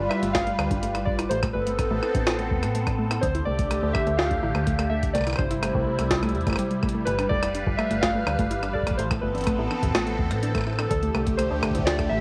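A phased analog pad swirls up at once with sustained, detuned sawtooth chords, joined straight away by warbly lo-fi synth keys carrying a mellow square-and-saw melody through chorus and tape echo, in this melancholic, glitchy IDM cut from a longer piece in A minor at 125 BPM. Underneath, a dusty pluck spins nasal, dark arpeggios through chorus, cassette tape and analog delay, while a metallic FM bass with a fast, decaying attack anchors the low end. The drums arrive almost immediately: a jungle sampler-style kit, pitched up and overdriven, brings gritty hi-hat, rim click and a high-tuned snare, and an electronic kick adds a deep, tape-softened thump from 0.3 seconds. The chords cycle through G7, Amadd9, Dsus4 and C in a straight 4/4, giving the piece a nostalgic, hazy drift. At 8.6 seconds a very quiet, flickering granular texture slowly fades in, bright and grainy with a long release. The whole mix has a home-cassette character, with light reverb and a digital ambience around the parts.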